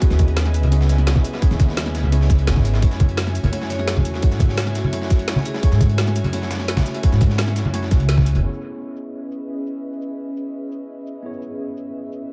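Lush and melancholic, this liquid drum and bass cut from a longer piece runs at 171 BPM in straight 4/4, sitting in C# minor as it moves from C#m7 to F#m7 and back to C#m7 at 8.4 seconds. An up-front electronic kick and a thumpy, woody pizzicato upright bass anchor the drop, joined by a gritty, overdriven sampler-style kit with a medium-tuned snare, a layered garage kit with a woody snare, metallic hats and cabasa, and soft-handed congas in the background. Above them, a worn, slightly out-of-tune tine electric piano plays accompaniment through overdrive and dub echo, while an airy, breathy pad holds sustained chords with a slow attack, detuned chorus and a mellow glow. A ringing vibraphone struck with hard mallets carries brief melodic phrases in the background, heard mainly from 3.7 to 5.8 seconds through analog delay. The band hits an accent at 8.1 seconds before most of the rhythm section falls away, leaving the electric piano, pad and garage kit under a filter sweep on an analog synth pad. 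Dub echo and a heavy digital ambience give the mix a deep, echo-soaked space.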